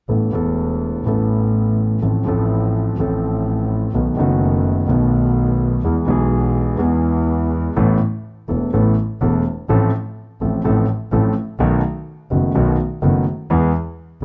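An intimate concert grand piano sits up front in this passionate, sultry tango excerpt, its deep bass and audible action noise giving the accompaniment a vintage feel as it moves through Asus2, F/A, B7 and E in A minor at 126 BPM with a rubato pulse, tuned to A4 = 437 Hz. Beneath it, a single bowed double bass sounds clear, smooth and somewhat distant, its even tone carrying vibrato. The chord cycle returns at 7.8 seconds for a second section, and close, detailed microphones with light reverb keep the sound present.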